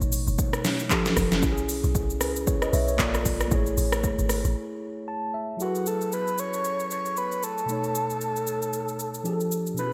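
A breathy, flute-like synth lead with chorus, phaser and delay enters at 5.6 s over a mellow tine electric piano, overdriven deep house drums with gated reverb and a round log drum bass that drops out at 4.6 s, giving this soulful, hypnotic amapiano cut at 115 BPM in F# dorian a bright 1980s-style digital sheen inside a lush hall.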